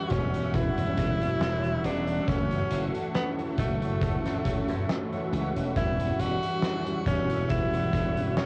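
Vaporwave, melancholic and woozy at a slow 69 BPM in E dorian with a light swing, this brief excerpt drifts between Em69 and F#m7 chords. An edgy, forceful tenor saxophone sits up front with vibrato and a jazz-style solo line, colored by cassette tape and tape echo, while mellow, detuned synth brass with analog chorus and a filter sweep plays accompaniment over a very quiet, silky string machine holding sustained chords. From 0.1 seconds a bright, punchy slap bass with tube saturation joins a boomy kick drum and an oversized low-tuned kit of hi-hat and fat snare, both gritty with 12-bit sampler crunch and tape, all set in a small room with light reverb and the hazy feel of a home cassette recording.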